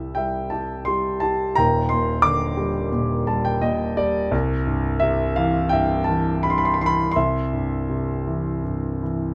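Sunny and relaxed, this short classical excerpt for solo concert grand piano unfolds lyrically in 4/4 at a flexible, rubato 74-90 BPM in C major, moving from C to Ebmaj7 and back to C, with a brief fill from 2.9 to 4.3 seconds, while close, detailed miking and light reverb keep the intimate, natural tone up front, revealing deep bass down to Eb1 and the audible action noise of the instrument.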